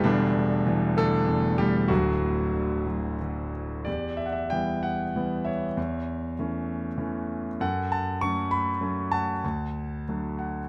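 Close and intimate, this clear grand piano sits up front in a small, moderately reverberant room, its natural tone carrying long sustain and audible action noise. It is a fragment of a longer lyrical classical solo in triple metre, played with rubato and a moody, bittersweet character that moves to a new section at 3.9 seconds. A brief piano fill arrives at 10.1 seconds, just before the fragment ends.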